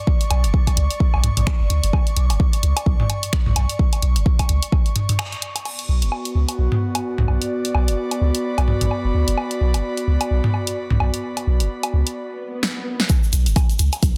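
An airy, breathy pad and a bubbling, resonant stepped-filter texture open this clinical, sparse minimal techno excerpt, both pumping against the beat, while an overdriven kick, a punchy analog drum machine with hi-hat, snare, finger snaps and crash, a deep sub bass and overdriven electronic woodblock and toms with delay fill out the swung groove. The kick drops away at 4.8 seconds, and after a short break the pad and texture stop at 12.2 seconds, making way for an electronic swell and a drum fill as the other drums, bass and percussion carry on. At 13.1 seconds the kick returns for the drop alongside a grainy, distant egg shaker, all set in a dense, heavily limited mix with light reverb.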